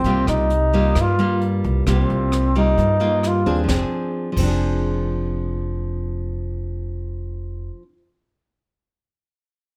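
A bright, punchy trombone carries a forceful jazz-style solo with vibrato, sounding distant and roomy, through the opening 3.6 seconds of this melancholic, smooth bossa nova excerpt in F minor at 132 BPM, moving from a C7sus4 to an Fm6 at 3.7 seconds. A full-bodied, fingerpicked nylon-string guitar in classical style and a woody, dark pizzicato upright bass sit up front throughout, while an airy, polished brush kit with dark cymbals, a high-tuned snare, rim clicks and a boomy kick plays until 4.5 seconds. Light reverb gives the short clip, which is cut from a longer piece, a gentle sense of space.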